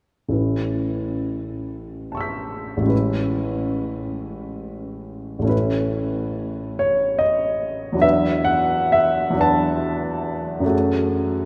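Serene and hazy, this impressionist classical solo piano passage, cut from a longer piece, unfolds in A major at a slow, rubato 40-52 BPM in 6/8, its clear, intimate grand piano sitting up front with audible action noise and ranging from A1 to B6 inside the long, echoing reverb of a vast cathedral, as a new section arrives at 5.5 seconds and the harmony moves from Aadd9 through E9sus4 at 8.0 seconds to F#madd9 at 10.7 seconds.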